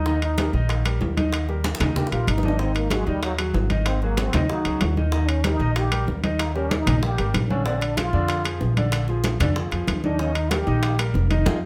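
A sunny, lively Afro-Cuban jazz excerpt in Eb major at 190 BPM opens with a clear, close-miked plunger-muted trombone taking a wah-wah solo with light vibrato, over a natural-toned baby grand piano comping and a dark, woody pizzicato upright bass up front, while tight high-tuned bongos, ringing background congas and dry metal-shell timbales drive the groove beneath a drum fill from 1.6 to 2.6 seconds, all in a light reverb, before a band accent lands at 11.5 seconds.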